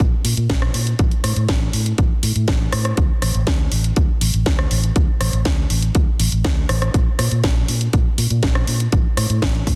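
Nu-disco at 121 BPM in a straight 4/4, this brief excerpt from a longer piece has a cosmic, groovy mood. A punchy, overdriven electronic kick sits up front beside a bright, amped fingered electric bass whose envelope filter and sidechain pumping give it bounce. A layered house kit adds hi-hat, rim click and a cracking snare, with the drums re-recorded in a large room, under a dense, heavily limited modern master with little reverb.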